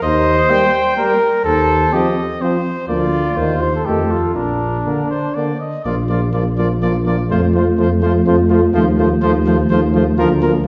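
This classical brass quintet excerpt, cut from a longer piece, sounds triumphant and warm in a straight triple metre. A clear trumpet carries the melody with light vibrato, while a second trumpet adds a mellow second line beneath it. The bass trombone sits up front with a smooth top, anchoring the low end. From 0.5 s, a distant, roomy trombone and a mellow French horn enter together in accompaniment. The harmony settles on Bb before turning toward F in a second section that begins at 5.9 s, all heard from further back in a reverberant recital hall with a softened high end.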